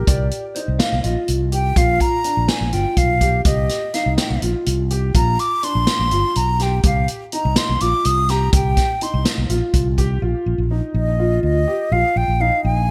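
Progressive instrumental band music in 7/8 at 248 BPM, counted in eighths, with a straight, intricate and brooding feel; it is cut from a longer piece and tuned to A4 = 439 Hz. An airy wooden flute with vibrato and a soft attack carries the melody up front, soloing until 10.2 s over harmony that moves between Cm and Bb before settling on Bbsus4. A round fretless electric bass sits low and prominent, while a dark grand piano plays smooth arpeggios with audible action noise, dressed in lush chorus and delay. A clean, fingered electric guitar with analog chorus adds a brief second line only in the opening moments. A vintage acoustic kit of hi-hat, punchy kick and medium-tuned snare, with gated reverb and a rolled-off top, drops out at 10.1 s. Light reverb and studio ambience frame a bright 1980s-style digital production.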